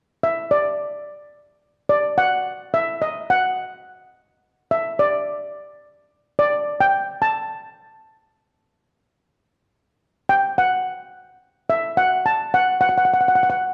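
Bathed in a wet recital-hall reverb, this festive, bouncy calypso fragment in D major at 107 BPM features a lone steel pan, played up front with soft rubber sticks for a shimmering yet mellow, dark tone, carrying the lead melody between D5 and A5 from 0.2 seconds and moving into a new section at 9.7 seconds before it is cut off.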